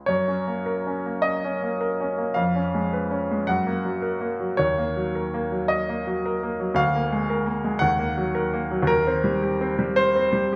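A clear, present grand piano sits up front in this lyrical, warm romantic character piece excerpt in F# major, moving in a rubato 6/8 at 50-58 BPM across a range from D2 to F#5 through chords such as F#, C#7/E#, D#m and A#7/D, all wrapped in a wet recital hall reverb with a 1.6-second decay.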